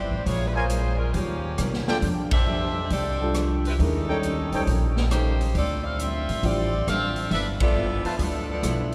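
Swinging at 136 BPM in 4/4 with a lilting eighth-note swing, this joyful big band passage is led by an edgy, tight saxophone section carrying the melody up front, over a woody, growly upright bass and a distant, roomy drum kit with a boomy kick. A bright picked steel-string acoustic guitar and a natural-sounding baby grand piano, entering at 1.9 s, fill out the harmony in the background, while a soft-attacked trumpet section adds stabs from 0.6 s and the full band hits accents along the way. The harmony moves from Bbm7 through Eb9 and F69 toward G13, all bathed in a wet cathedral reverb.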